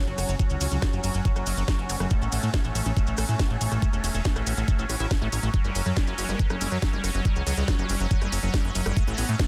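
Psychedelic trance at 140 BPM in a straight 4/4, this short cut from a longer piece feels hypnotic and trippy. A knocking, tape-warm electronic kick sits up front. Beside it is a thick sawtooth-and-square analog bass with a moving notch filter sweep, playing between E1 and A2. Above them, a squelchy, resonant acid bass riff carries chorus, delay and sidechain pumping, while a bubbling, detuned stepped-filter texture holds bright sustained chords that swell in slowly and breathe with the same pumping. An overdriven techno kit adds a cracking snare, smooth hats, ride and rim clicks, and grainy, close, dry maracas sit in the background. A nasal, very quiet vowel-sweep wobble bass surfaces at 0.8 s and again at 6.3 s, and a faint electronic zap flickers at 1.9 s. The harmony moves between F#5 and A5 chords over a dense, heavily limited modern master with digital ambience.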